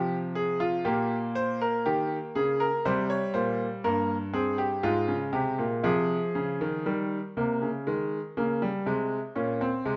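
Contemplative and serious, this 10-second cut from a baroque-style three-part fugue for solo concert grand piano moves at a stately 60 BPM in 4/4, its brilliant, up-front tone and deep bass ranging from G2 to Db5 through F minor harmonies that shift toward E-flat and A-flat around 6.9 seconds, all set in a moderate stone room with a dark production.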